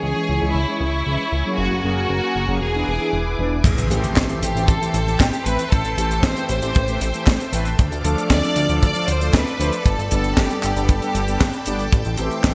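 An Italo disco excerpt, nostalgic and bittersweet, opens with an intimate sul tasto violin section carrying the melody over lush string-machine chords, bold brassy synth stabs with a cassette-tape tint and a glossy, up-front chorused synth bass, until at 3.6 seconds a dry, tight kick and a gated-reverb funk kit with bright cymbals, handclaps and a high-tuned snare arrive alongside a very quiet electronic impact, all within bright 1980s-style digital production.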